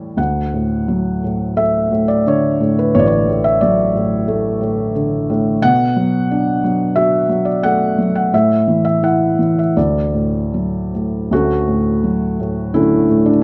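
Relaxed and hopeful, this short classical excerpt cut from a longer piece features a felt-muted upright piano playing lyrical solo lines in D major, moving with a rubato feel between 73 and 91 BPM in 4/4. The piano sits up front with a soft, mellow, intimate tone from its thick felt, spanning A1 to F#5 as the harmony moves from D through Bm7 and A5 back to D before settling on Dmaj7 at 11.3 seconds. A moderate recital hall reverb and dark production frame the 13.4-second passage.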